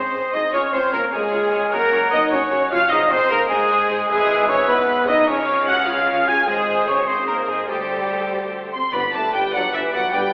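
Moving in a straight 6/8 at 100 dotted-quarter beats per minute, this cinematic passage in Db major, cut from a longer piece, feels adventurous and triumphant. A rich, smooth violin section carries the melody with even vibrato, while a darker, very quiet violin section weaves a second line alongside a pure straight-toned flute, a mellow clarinet and a warm oboe with light vibrato, the three winds sitting in the background. Up front, a tight French horn section holds sustained chords, while in the background mellow trumpet stabs sound until 8.7 seconds and a focused viola section supplies accompaniment. Lush cello and double bass sections anchor the bass, very quiet timpani on calf heads join at 2.9 seconds, and a soft-attacked tuba enters at 8.9 seconds as the harmony moves to G. The ensemble sits in a reverberant recital-hall space, yet the overall sound is narrowed to a thin, telephone-like band.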